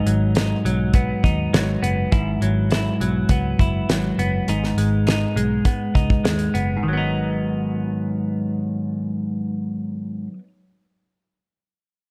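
Indie and bedroom pop in G# minor at 102 BPM, this wistful, hazy excerpt sets a clean, compressed semi-hollow electric guitar up front, drifting through G#m7, F#9sus4/G# and a rootless C#sus2/G# with subtle chorus and vibrato, over a round, foam-muted vintage fingered bass and a dry, damped 70s drum kit with a fat snare and tight kick that drops out at 6.7 seconds, all in a dark production with light small-room reverb.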